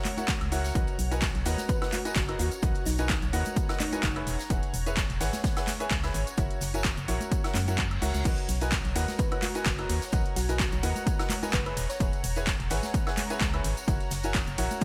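A bright, 1980s-style digital production with light small-room ambience carries this feel-good, euphoric piano house excerpt in B major at 128 BPM with a gentle 16th-note swing, where a brilliant, woody upright piano riff with delay and sidechain pumping rides over a blurred, evolving granular cloud pad, a tape-warm analog drum machine with gated reverb, a very quiet, airy metal drum kit, background congas and tambourine, an overdriven, punchy electronic kick, and a hollow, organ-like FM bass with tube saturation, while a round, tine-like synth pluck with chorus surfaces at 1.7 and 9.2 seconds and a faint reverse cymbal sounds at 7.9 seconds over chords cycling through F#7, Bmaj7 and E69.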